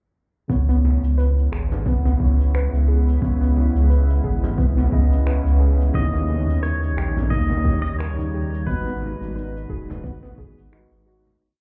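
Heard muffled as if through a wall, with club reverb around it, this relaxed, wistful sunset chillout piece moves at 88 BPM in 4/4 with a swung sixteenth feel in C# dorian, its groove running on a deep, round sub bass up front, a soft overdriven kick, gritty electronic cabasa and finger snaps, and ringing congas set distant in the background. A barky, overdriven tine electric piano with tremolo, delay and a filter sweep holds spread chords with syncopated pushes over C#m7, D#7 and G#m7, while an ethereal shimmering pad sustains in the background and a soft, dark pluck with cassette-tape colour repeats an eight-step arpeggio. At 6.0 s a bright, clean pedal steel guitar, played with fingerpicks, slide and volume swells, enters with a delayed motif, and the whole piece fades out from 7.8 s to its close at 11.4 s.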